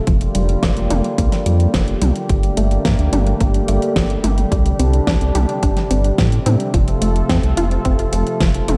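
A straight 4/4 pulse at 108 BPM drives this nostalgic, moody synthwave excerpt in G minor, cut from a longer piece, where a punchy, layered electronic kick and a pop drum kit with a fat snare, metallic hats and toms sit in studio reverb. A detuned, warbling vintage pad holds sustained chords through Bb6/F, Gmadd9, Csus2 and F with chorus and sidechain pumping, while a round, deep bass sits up front and pumps along. A bright, short-decay pluck plays arpeggios with chorus and delay in the background, carrying a filter sweep from 0.0 to 8.8 seconds, all within a dark production touched by light digital ambience.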